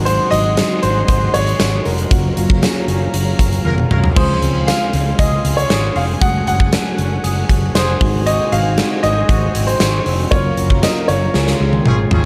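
A dark, warm production with light reverb and a small-room ambience frames this short, nostalgic and romantic cut of 1980s-style pop in a straight 4/4. A concert grand piano with a deep low end carries the melody from the first moment, over soft, round electric-piano-like synth keys with chorus and a smooth, detuned analog pad sitting in the background. A punchy, amped fretless bass anchors the harmony, while a huge arena drum kit sits up front with bright cymbals, a tight kick, a medium-tuned snare, tambourine, toms and a pumping hall sound. A distant, roomy horn section with octave doubling adds brief stabs through digital delay around 3.6 seconds, as the band accents and a drum fill bring in a twangy, compressed clean electric guitar riff with lush chorus at 4.2 seconds. The chords move through lush seventh sonorities, including Gbmaj7, Dbmaj7 and Ab7, before the horns and another fill return at the close.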